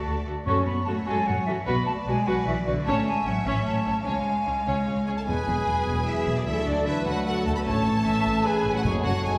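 In a straight 3/4 at 151 BPM, this swashbuckling, adventurous cinematic cue in F# minor sets a bright, focused violin section on the melody over an airy concert flute, a rich background violin line, smooth violas, lush cellos and a distant double bass section, with soft-mallet timpani entering at 0.5 seconds before dark French horns join at about 5.1 seconds and mellow trombones and shadowy trumpet stabs follow at about 5.3 seconds, all heard from further back in a reverberant scoring stage.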